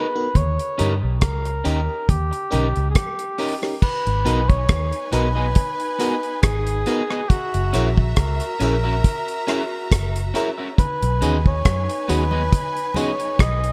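Lovers rock reggae with a bittersweet, smooth mood, taken from a longer piece: a dark cor anglais carries the melody in a classical style with tape echo, over a glassy, bell-like FM electric piano with chorus and slightly broken-up, picked electric guitar stabs in spring reverb. From 0.4 seconds a round, foam-muted vintage fingered bass and a dry deep reggae drum kit with a tight kick and gated reverb sit up front, while very quiet, thick-skinned congas come and go. From 3.8 seconds a lush, woody studio string section adds a bowed second line with vibrato, and the whole piece sits in a studio reverb.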